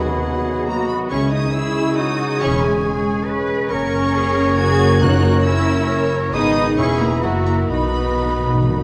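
A lush violin section carries the melody with smooth, even vibrato through this graceful, cheerful passage of a fast, dramatic romantic orchestral movement in 3/4, its rubato phrasing floating over a rich viola section, a deep double bass section and a background cello section. Clarinet, airy hollow flute and oboe weave second lines alongside a distant, focused second violin section that enters at 1.1 seconds, while a French horn section holds sustained chords and a ringing, fingerpicked harp adds mellow arpeggios. Very quiet, round timpani under soft mallets sound at 5.0 seconds and return for a fill at 7.7 seconds, all set in a dark production bathed in scoring-stage reverb.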